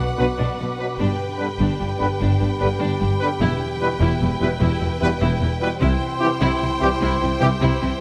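Cinematic orchestral music in a swashbuckling, determined mood at 100 BPM in 12/8, where a rich, focused symphonic violin section carries the melody over a smooth viola accompaniment, a bowed double bass and background cello bass, a dark clarinet, pure flutes and distant studio violins as second lines, ringing thumb-plucked harp arpeggios, very quiet tight trombone and roomy French horn chords, and clear trumpet stabs entering at 0.2 seconds, all moving through Bm, G, Em and C in a moderate scoring-stage reverb.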